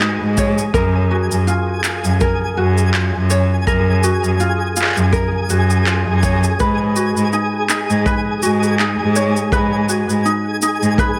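A lightly swung 4/4 pulse at 82 BPM carries this wistful, autumnal folktronica piece in G# dorian, cut from a longer work. Electronic handclaps and shaker with a tape-warm, produced character, re-recorded in a large room, set the groove from the start, joined at 0.4 seconds by a muffled, punchy acoustic kick with a rolled-off top and a lo-fi, small-room feel. An up-front, bowed cello from a single player holds the bass with a rich, focused tone and vibrato, while a light, fingerpicked ukulele plays arpeggios through a digital delay. Above them, a twinkling granular texture adds FM sparkle and octave-up shimmer, with slow attacks, long releases and its own reverb. The harmony moves from G#m7 to F#maj7 and returns to G#m7 at 6.6 seconds, all within light reverb and studio ambience.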